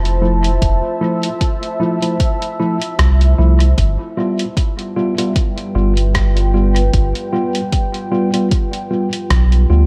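A deep, moody ambient pad and a round, soft sub bass open this hazy, peaceful ambient dub excerpt at 76 BPM in G mixolydian, the pad's detuned sawtooth chords drifting through chorus and reverb over Fmaj7 and then G7 from 3.8 seconds. A muffled, tape-warm sampler kit of hi-hat and rim click with dub echo comes in almost at once, joined by worn, slightly out-of-tune electric piano stabs that are filtered and echoed, and at 0.6 seconds an overdriven electronic kick. The sub bass sits up front beneath a lightly swung 16th-note feel, all in a gentle digital ambience.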